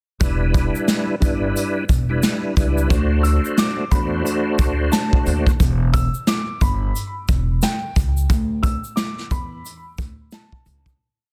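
A dense, heavily limited master with little reverb gives this reflective, gritty boom-bap hip-hop piece in E minor a close, compact sound at 89 BPM with a swung sixteenth feel. A vintage brush kit drives a hard kick and backbeat snare with soft clipping on the snare, a woody pizzicato upright bass loops a deep line with chromatic approach notes, and an egg shaker plays grainy sixteenths in the background, while a reedy tonewheel organ with key click, chorus vibrato and slow rotary speaker chops looped chords through a cassette-tape colour until 5.5 seconds. From 3.2 seconds a dark, mellow upright piano with digital delay repeats a short, sample-like melody over a break that begins at 5.6 seconds and fades out to the end.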